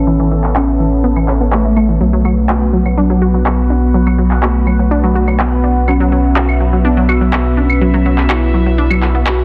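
A straight melodic techno groove carries this hypnotic, cinematic fragment from a longer piece, with filtered electronic handclaps and claves entering at 0.4 s over a deep, rumbling detuned saw bass that sits up front. A smooth, expressive sawtooth lead with vibrato, chorus, tape colour and dub echo carries the melody, while a round analog pluck arpeggiates through digital delay. Both are shaped by filter sweeps as the harmony moves from Aadd9 to Bm, and a bright, resonant sweeping pad and a moody ambient pad in the background fill out the dense, heavily limited mix.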